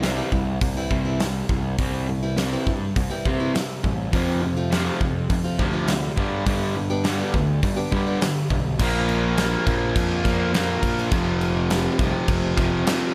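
Light reverb frames this dark, cathartic stretch of quiet-loud alternative rock, with the drum kit up front in a bright stone room. A boxy acoustic archtop guitar with fresh strings picks arpeggios, finger squeak audible, while a crunchy overdriven electric guitar plays a riff. Underneath, a fuzz-soaked electric bass, direct and amped, holds the low end. The big rock kit drives the straight 4/4 feel with crash, hi-hat, a medium-tuned snare and a punchy kick. At 4.1 seconds a tight distorted guitar joins with a second riff, the archtop drops out at 8.4 seconds, and at 8.8 seconds the harmony moves from C, F and G to Bb5 and F5.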